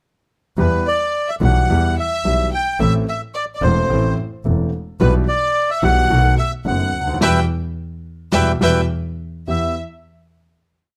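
Tense and melancholic, this short tango moves at 108 BPM in 4/4 with a rubato feel, set in E minor. The bandoneon carries a reedy, dark, motif-based melody built in period phrases, sitting up front, while a lush studio violin section doubles in unison as a second line, its bowed tone smooth and rich with vibrato. Underneath, a concert grand piano plays a milonga rhythm with deep bass and audible action noise, and a single bowed double bass, clear and focused, shares that milonga pulse. The harmony moves from Em through Am, Em/B and B7 back to Em, with a band accent from 7.2 to 9.5 seconds that takes in a brief break at 8.9 seconds, before a final Em chord closes the piece at 11.0 seconds. Close, detailed microphones and light reverb give the whole piece a clear, present studio sound.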